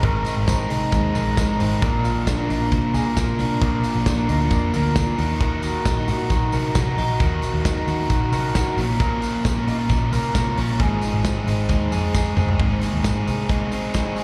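Nostalgic and youthful, this short piece cut from a longer jangly indie pop track moves at 134 BPM in a straight 4/4, set in Ab mixolydian. A biting overdriven guitar plays accompaniment while a second electric guitar, heard through a small old amp with a slightly broken-up, compressed tone and tape echo, picks arpeggios; the overdriven part carries slapback echo. Beneath them a vintage muted picked bass sounds dark, round and foam-muted, and a loose indie drum kit, with punchy kick, medium-tuned snare, dark cymbals and a rolled-off top, drives the groove using hi-hat, ride, snare, kick and toms. A jingly, band-limited tambourine joins at 0.3 seconds and sits in the background. The chords move from Abadd9 through Bb, Ebm, Bbm and Ab6, and a drum fill at 12.1 seconds leads into a new section at 12.6 seconds, returning to Abadd9. The whole performance has the feel of a live gig heard through the venue's PA, with small room ambience and recital hall reverb.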